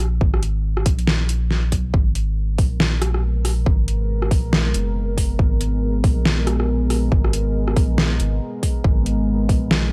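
Deep dubstep at 139 BPM in G# minor with a half-time, swung feel, heavy and brooding, built on a round, soft sub bass held over a G#madd9 chord, a punchy overdriven kick and a gritty kit of deep snare, rim click and metallic hats pushed up front, before a moody, detuned sawtooth pad with chorus and its own reverb warbles in at 3.1 seconds, all in a dry hardware sound with light digital ambience, cut from a longer piece.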